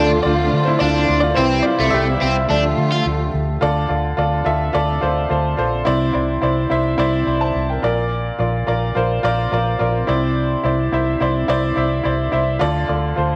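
A straight 4/4 pulse at 107 BPM drives this earnest, bittersweet piano-driven pop piece in D minor, moving from Dm through C and Cadd9 to Bb before settling back on Dm. A bright, woody upright piano, slightly detuned with audible action noise and a cassette-tape grain, sits up front throughout and takes a solo over the first 3.6 seconds. Alongside it, an overdriven, scooped, double-tracked guitar riff stops at 3.1 seconds, and bowed studio strings with vibrato and portamento also pass through cassette tape. Beneath them a dark, round, foam-muted fingered electric bass holds the low end, with light reverb and small-room ambience framing the home cassette recording.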